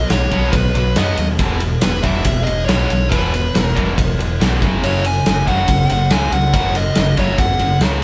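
A dark, smooth overdriven lead guitar sings its melody over a tight, bright, double-tracked distorted guitar riff and an amped, overdriven fingered bass, all launching together in this anthemic, energetic hard rock excerpt cut from a longer piece. A big acoustic rock kit sits up front with a punchy kick, a medium-tuned snare and ride cymbal, its rolled-off top giving the drums a mellow edge in a large room. The band plays live together under light reverb as the harmony moves from B to E5 and then F#5 by 4.6 seconds.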